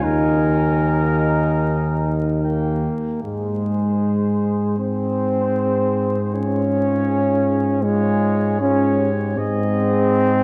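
Classical brass quintet music, heroic and solemn, moves at a rubato 77 BPM in Ab major, with a distant, softly attacked trumpet melody touched by light vibrato over a punchy flugelhorn second line and a background French horn, while an up-front, smooth-topped trombone and a warm bass trombone carry the accompaniment and bass through a dark production of church reverb and vinyl crackle, settling from Ebsus4 and Eb onto Ab at 3.2 seconds.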